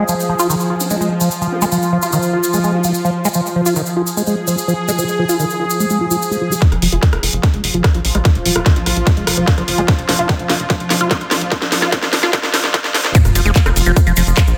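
A straight 4/4 pulse at 147 BPM drives this alien, intense psychedelic trance excerpt, opening over a rootless Ebsus4 with a grainy, distant egg shaker ticking from the start. An evolving, morphing wavetable pad holds sustained chords through phaser and its own reverb, pumping against the sidechain, while a squelchy, resonant liquid acid bass riff runs beneath it through phaser and digital delay, the pad moving under a filter sweep. A nasal, wobbling vowel-sweep bass adds a very quiet second line between 0.8 and 2.9 seconds. At 6.6 seconds the chords fall away and a build-up begins: an overdriven, tight electronic kick sits up front with a drum and bass kit of cracking snare, metallic hats, handclaps and rim clicks, a drum fill rolls through, and a punchy sawtooth sequencer bass plucks low, driving notes as further filter sweeps move across the pad and the acid bass. The drop lands at 13.1 seconds on an F5 chord, with an impact, a very quiet electronic sub drop and the returning shaker. 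The mix is dense and heavily limited, set in a moderate digital room reverb.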